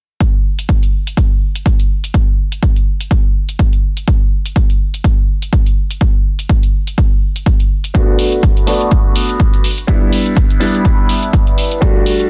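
A dense, heavily limited modern master with small-room ambience carries this joyful, feel-good filtered disco house excerpt, where a punchy, tape-warm electronic kick sits up front beside softer layered hi-hats that pump with sidechain compression, until a clear, worn concert grand piano enters at 7.9 s through a phaser, low-pass filter and pumping, moving from Bm7/A to G6 at 9.6 s.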